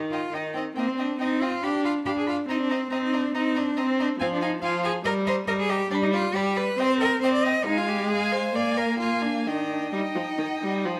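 Cheerful and spirited, this quick classical-period movement for string quartet moves with a rubato feel through an 11-second excerpt cut from a longer piece. The viola and cello sit up front, the viola focused with vibrato as it carries the accompaniment and the cello smooth and even on the bass line. The first violin's melody, with expressive portamento, sounds distant in the background beside the second violin's smooth second line, all captured by close, detailed microphones in a moderate recital hall reverb.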